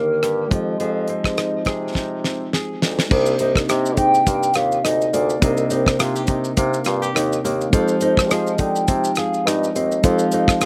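A hollow, woody clarinet-like synth lead with chorus sings the melody over a background tine electric piano, a fingerpicked nylon-string guitar with warbly pitch drift and audible finger squeak, and a distant, lightly vibrato bassoon bass line; at 0.2 seconds a dry, damped 70s drum kit with a fat snare joins, rolling into a fill from 2.0 to 3.1 seconds in this dreamy, sunny indie bedroom-pop piece at 104 BPM, which moves from Ebmaj7 and Fm7 to Cm7 in a dry outdoor recording with little reverb.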